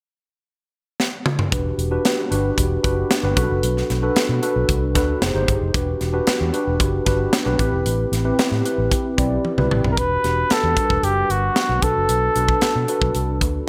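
A drum fill from a crisp fusion kit, with a high-tuned snare, punchy kick and gated reverb, opens this nocturnal, urban slice of polished 1980s jazz-funk pop at 114 BPM in E minor. At 1.5 seconds a mellow tine electric piano with analog chorus and a dark, foam-muted fingered electric bass join in over Em9, Bm7, Fm9 and Am7 chords. As a second fill winds down, a warm flugelhorn takes the up-front solo melody from 9.9 seconds, singing with vibrato and scooped notes in a small, lightly reverberant room.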